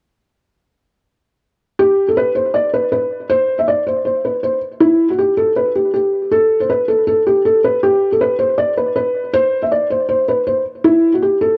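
A half-time 4/4 pulse at 159 BPM underpins this triumphant yet dreamy hip hop fragment, tuned to A4 = 441 Hz and cut from a longer piece. A felt-muted upright piano carries the melody between E4 and E5 from 1.8 to 11.6 seconds, sitting up front with a dark, intimate tone, thick felt and audible action noise, shaded by a low-pass filter, cassette tape coloring and tape echo. The home cassette recording adds light reverb and small room ambience.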